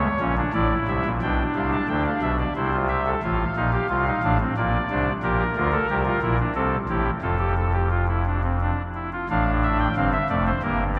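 Classical baroque-style three-part fugue for solo pipe organ, joyful and elegant at 89 BPM in 3/4, cut from a longer piece, where a soft reed oboe stop with baroque voicing, audible chiff and a tremulant sits up front across a span from F1 to A5, tuned to A4 = 442 Hz and settling into F major from 5.2 s as the harmony moves through G7/B, F7/A and Gm7/Bb to a closing F, all bathed in a cathedral reverb with a 4.5-second decay.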